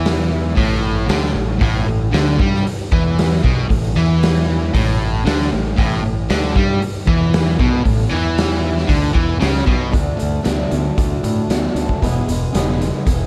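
Opening with overdriven electric guitar riffing on an A5 power chord alongside a dark, sludgy distorted guitar in the background, a growling, punchy fingered bass and an up-front, gritty garage drum kit with a punchy kick, this confident, sunny classic rock excerpt in A major at 115 BPM shifts at 9.9 seconds to D and then E at 12.0 seconds as the overdriven guitar stops and a boxy, shimmering, octave-doubled twelve-string acoustic guitar enters, all set in light reverb and small room ambience.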